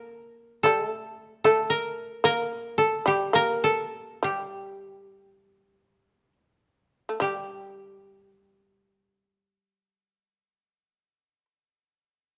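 In a free, rubato 2/4 that drifts between 34 and 57 BPM and slows from 2.0 s to 7.2 s before a new section begins, this solitary, austere excerpt of Japanese traditional chamber music in G hirajoshi pairs a dry, woody, fingerpicked koto melody, placed up front, with a percussive, buzzing, plectrum-plucked fretless shamisen line sitting lower beneath it, both closely and intimately captured within a moderate recital-hall reverb.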